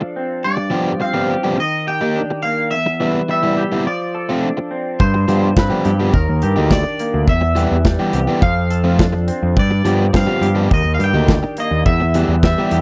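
A big rock drum kit sits up front once it enters at 5.0 seconds, with a punchy kick, a medium-tuned snare and hi-hat in a studio room, driving this jangly, carefree indie rock excerpt at a straight 105 BPM in 4/4, in G mixolydian. From the start, a bright, clean, twangy electric guitar with a scooped tone carries the melody through a lush chorus, while an up-front overdriven electric guitar and a raw garage guitar with overdrive and analog chorus play riffs underneath. A growling picked electric bass, overdriven and up front with a direct-and-amped character, joins the drums at 5.0 seconds to fill out the low end. The harmony cycles through G7sus4, Ebmaj7, Em and F6. The sound is dry and close, like a 1970s-style studio recording with little reverb, and this fragment of a longer piece runs to 12.8 seconds.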